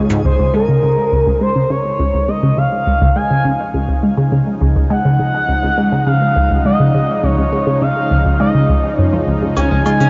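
Cosmic and expansive, this excerpt of ambient, sequencer-driven space music at 103 BPM in Db major rests on a Dbadd9 chord, with a juicy, squelchy blip pluck riff up front under a filter sweep and phaser, a thick detuned unison pad fading in beneath, and a smooth portamento lead carrying a vibrato-laced melody from 0.2 seconds, while faint shaker and woodblock frame the opening and close and a dark, clean picked electric guitar adds arpeggios from 9.6 seconds, set in a huge reverb with the warble of worn cassette tape.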